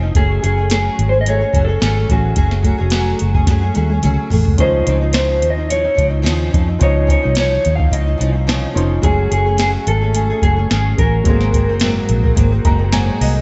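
A fingerpicked nylon-string guitar, softened by an ensemble chorus and a warbly pitch drift, opens this hazy, nostalgic indie and bedroom pop excerpt in Db major at 108 BPM with a light 16th-note swing, alongside a round, foam-muted vintage bass sitting up front and a tape-softened analog rhythm box with a deep kick, tonal snare and metallic hats. A dark, slightly broken-up electric guitar carries the picked, lo-fi melody through lush chorus and tape echo, while the drum machine plays a fill from 3.5 to 4.6 seconds before a woody, slightly detuned upright piano enters at 4.6 seconds. The harmony moves from Gbmadd9 to Dbmaj9 and back, landing on Ab9 as the piano takes a closing fill, all set in light reverb and digital ambience with a dusky, rolled-off top end.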